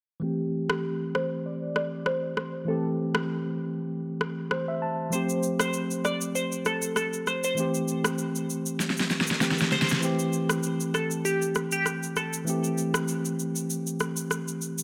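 Set in light reverb, this breezy, sunny afrobeats excerpt at 98 BPM in C major pairs an up-front, clean tine electric piano accompaniment with a glassy, crystalline wavetable pluck melody carrying chorus, digital delay and a filter sweep until 10.0 seconds, over layered electronic drums of rim click, shaker and a fat snare that enter at 0.7 seconds and play a fill from 8.8 seconds.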